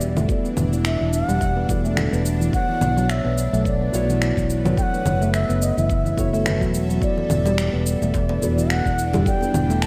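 Earthy and meditative, this organic downtempo excerpt sets a breathy, tongued bamboo bass bansuri melody with vibrato over a round, amped fretless electric bass up front, ringing nitrided-steel handpan arpeggios with vintage 12-bit grit, a dark felt-muted upright piano with audible action noise, a bright detuned sawtooth drone with phaser in the background, an electronic kick, tape-tinged electronic cabasa, congas and finger snaps with gated reverb, and a tight, cracking djembe that joins at 7.2 s, all in a lush hall with bright 1980s-style digital production.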